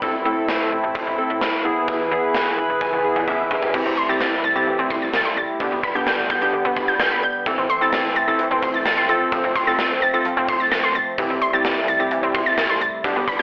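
A straight, driving 4/4 pulse carries this nocturnal synth-pop fragment, cut from a longer piece, with a gated 80s drum kit up front: bright cymbals, hi-hat, a medium-tuned snare, a punchy kick and toms in a bright stone room that shuts off abruptly. Beneath it, a snappy FM bass with a metallic, slap-like attack and tube saturation sits in the background. Mellow, round analog keys with chorus and a smooth, sustained sawtooth pad fill out the harmony. A keys fill at 2.3 seconds and a drum fill at 2.8 seconds lead into the second section at 3.7 seconds, where a lush, detuned unison pluck enters with slapback echo, its wave-folded, ring-modulated tone cutting through the mix. The recording is blown-out and overdriven, squeezed into a telephone-like band and soaked in digital room reverb, which lends it a gritty urgency.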